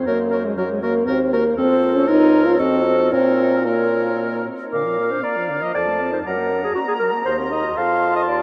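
A mellow French horn opens this spirited, graceful classical-period movement for wind quintet in triple time. It is joined at once by a hollow, tongued silver flute with vibrato carrying the melody, a clear oboe with vibrato on a second line, a smooth-topped clarinet in accompaniment and a dark, softly attacked bassoon with light vibrato on the bass. The close-miked flute contrasts with the more distant, roomy oboe and bassoon, while the rubato feel and the huge reverb of a vast, echoing space give the 8.4 s passage, cut from a longer piece, a supple, airy sweep.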